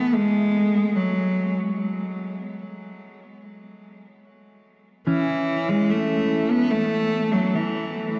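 Bathed in a cavernous cathedral reverb and a dark, warm production, this weightless, serene ambient excerpt drifts in free time as a mellow, clean electric guitar fades in with fingered arpeggios colored by phaser and delay before stopping at 6.8 seconds, while a single rich, smooth cello, bowed and up front, carries an even melody with vibrato and delay, the harmony settling on an E5 chord at 5.1 seconds.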